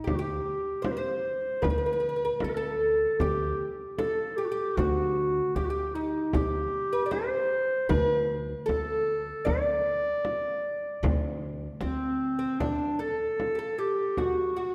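A mellow, distant clarinet leads a stately, festive Turkish makam tune in D hicaz at 77 BPM in a straight 4/4, while a bright, plectrum-plucked fretless oud with double strings plays a second line in the same register. Pizzicato upright bass with a dark, woody tone holds a low D until 12.4 s, and a frame drum played with soft hands sounds close and dry. The ensemble sits in a reverberant concert hall, and a new section arrives at 12.6 s before this fragment of a longer piece cuts off.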